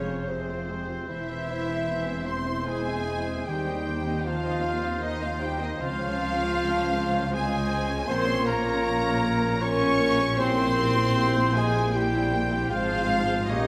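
Melancholic and solemn, this slow romantic orchestral movement moves at 77 BPM in a rubato 3/4, opening on F minor and passing through Db major seventh and Bb minor before settling on F minor over Ab. A lush symphonic violin section carries the smooth, vibrato-rich melody, while a focused chamber violin section, a very quiet pure flute ensemble and a solo oboe with light vibrato add second lines, joined lower down by a distant solo clarinet in the background. Expressive violas fill out the accompaniment, a mellow French horn section holds sustained chords, and a tight trumpet section adds dark stabs from afar. A very quiet concert harp plays ringing, thumb-plucked arpeggios, and underneath, a bowed cello section and a rich double bass section form the bass. The 13.7-second excerpt sits in a moderate concert hall reverb of about 2.1 seconds, giving the winds and brass a roomy depth.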